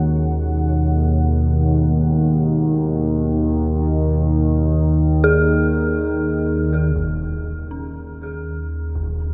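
A dark ambient drone in free time, ominous and vast, where a warbling, vintage analog drone sits up front over a deep, moody pad in the background that fades out by 7.0 seconds, an eerie, inharmonic synth bell plays arpeggios through a diffuse delay from 5.2 seconds, and a huge, low-passed impact lands at 7.0 seconds as a filter sweep moves over the drone, all bathed in a cavernous reverb.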